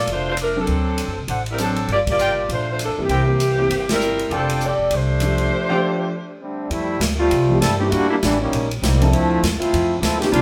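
A lively big band plays together in one roomy studio, heard in a short cut from a longer swing piece with a joyful, swinging mood. A clear saxophone section with a smooth top and vibrato carries the melody over woody, thumpy upright bass, a polished drum kit with a punchy kick and ride cymbal, and a natural-sounding grand piano, while a soft-attack trumpet section adds stabs and the band hits accents. After a break at 5.5 seconds, a brilliant, tight trombone section steps up front for a solo from 6.7 seconds to the end.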